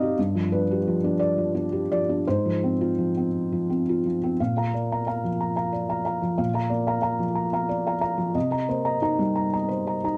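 Neoclassical minimalist piano in a rubato 6/8, this melancholic, wistful fragment of a longer piece features a solo felt-muted upright piano whose dark, mellow tone sits up front with audible action noise, moving through G7 and Fm/Ab before a second passage at 4.4 s settles on Bb and then Cm7, heard in a dry, close 1970s-style studio recording touched by studio reverb.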